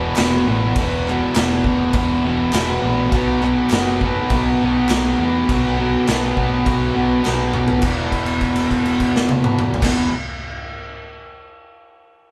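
Captured as a band playing live in one stone room, the recording has a moderate reverb and some lossy compression artefacts, giving this cut from a longer piece a rough, swaggering edge. It's garage rock at 102 BPM in a straight 4/4, built on a fuzz guitar riff that sits up front, distorted and double-tracked, moving between E5 and B5 chords in the low register. Underneath, a picked hollow-body short-scale electric bass adds a dark, round, amped bottom end. The raw drum kit sounds saturated and gritty, with a punchy kick, a medium-tuned snare, crash cymbal and toms ringing in a bright, pumping room. A group handclap sits very quiet and hollow in the background, stopping at 8.1 s. A drum fill at 7.2 s leads into a held E5 note from 7.8 s that carries the piece nearly to its close.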